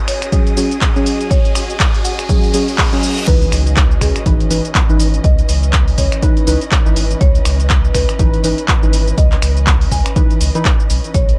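Deep house with a moody feel, cut from a longer piece: a background riser and reverse cymbal build over a veiled, con sordino string section, a faint shimmering string-machine violin texture and a woody, gritty marimba with analog delay, while a punchy drum machine with crash, finger snaps, handclaps, hi-hat and shaker, a dark, warbling chorused chord stab with tape echo and an up-front electronic kick enter, until the drop at 3.3 seconds brings an impact and a round, tube-saturated sub bass under the pumping strings and stabs.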